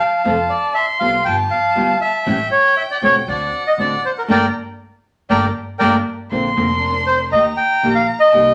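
The reedy, airy bandoneon carries the melody up front in this sultry, dramatic tango excerpt, moving in a rubato 4/4 around 119 BPM, tuned to A4 = 436 Hz. Above it a single bowed violin sings a second line with vibrato and portamento, expressive and warm. A full-bodied nylon-string guitar, fingerpicked in a classical manner with audible finger squeak, enters at 0.2 seconds alongside a dark, distant chamber string section that adds bowed stabs in the background. A pizzicato upright bass, woody and thumpy on steel strings, joins at 0.3 seconds to anchor the low end. The harmony moves from F through G7, A7 and D7 to Gmadd9, where the band accents together until 6.3 seconds, then a new section opens on Bbadd9 and settles on Eb. Everything sits in a wet studio reverb that lends the ensemble a lamplit glow.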